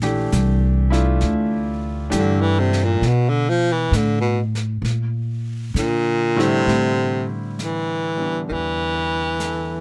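A clear baby grand piano, a woody upright bass and a brushed drum kit open this fragment of a slow, swinging jazz ballad with an intimate, smoky mood. The pizzicato bass sits up front with a thumpy gut-string tone, while the piano comps softly with its action noise audible and the brushes on snare and hi-hat stay airy and low in the mix. At 2.2 seconds a breathy baritone saxophone enters to take the solo melody, whispered and soft in attack with a light vibrato, placed close and up front. The harmony drifts through a rootless Bb6, an Asus24 and a Bbadd9 before settling on Am9 as a new section begins at 6.7 seconds. Close, detailed microphones and little reverb keep the small-room sound dry and natural, so every breath and touch comes through.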